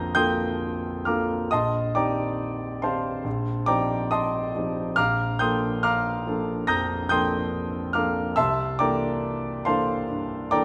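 A concert grand piano opens this short passage of impressionist solo classical music, its tone clear and natural and placed up front, with a deep bass. The mood is hazy and serene, moving at a slow 70 BPM in 4/4 with a flexible, rubato feel. The piano spans a broad register from Bb1 to Bb6, settling first on a Cm9/Bb harmony before shifting to C13 at 8.4 seconds. A moderate recital-hall reverb surrounds the instrument and lends it a gentle sense of space. Lasting about 10.6 seconds, the fragment is cut from a longer piece.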